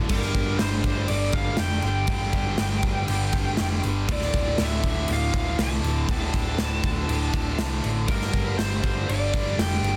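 Three bright, picked rhythm guitars, one cranked and overdriven, one tight and distorted, and a very quiet double-tracked high-gain layer, open this heavy, driving hard rock excerpt at 120 BPM over a dark, round hollow-body bass, with a dark high-gain lead melody and an up-front gated 80s drum kit with punchy kick and bright cymbals joining at 0.1 seconds as the chords move from G5 to D5 to Gm in light small-room ambience and a dense, heavily limited master.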